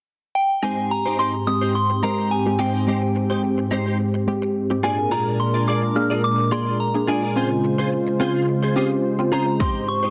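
A soft, pure FM bell opens the melody at 0.4 s, shimmering with chorus, phaser and tape echo, and at 0.6 s a round, dark filter pluck, a smooth detuned analog pad pumping to the sidechain and a clean, direct-recorded electric guitar riff with ensemble chorus join in over Abmaj7, Bb7 and Dbmaj7 chords, giving this summery, carefree dance-pop excerpt at 107 BPM in Ab major its easy glow before a punchy, overdriven electronic kick lands up front at 9.6 s, the whole mix set in a moderate plate reverb with a dense, heavily limited modern master.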